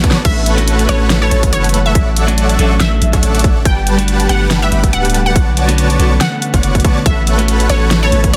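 A huge, detuned supersaw riff pumps with the sidechain from the first moment of this bright, lush future bass excerpt, set at 141 BPM in a half-time feel with light 16th-note swing in A mixolydian. A hard-clipped electronic kick and an overdriven pop kit with fat snare, hi-hat and crash open on a drum fill. A deep sine 808 bass, a punchy ring-modulated unison pluck melody with digital delay, and a very quiet ethereal pad arrive at 0.2 s, and a clean picked electric guitar joins in the background at 0.6 s, as the chords move from A69 through Dmaj9/A, Gmaj7 and Bm9 back to A69 inside a dense, heavily limited master.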